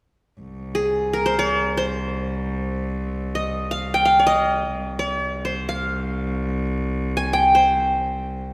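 A bright-edged, plectrum-plucked qanun carries the melody up front in C maqam bayati, entering at 0.7 seconds over a low, focused bowed cello drone on C2 that begins at 0.4 seconds, the unmetered Arabic phrasing sounding longing and soulful in the lingering reverb of a concert hall in this short cut from a longer piece.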